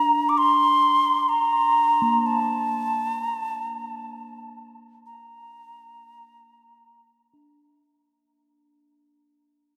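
World meditative music in free time and B-flat major, this peaceful, calm excerpt drifts through a vast, echoing space. A breathy clay alto ocarina carries the melody up front, its crisp attack, vibrato and delay giving each expressive phrase shape until it stops at 7.2 seconds. Beneath it, a quartz singing bowl struck with a suede striker adds a pure, ringing texture with slow beating, close and dry in sound, sustaining to 8.4 seconds as the music fades out.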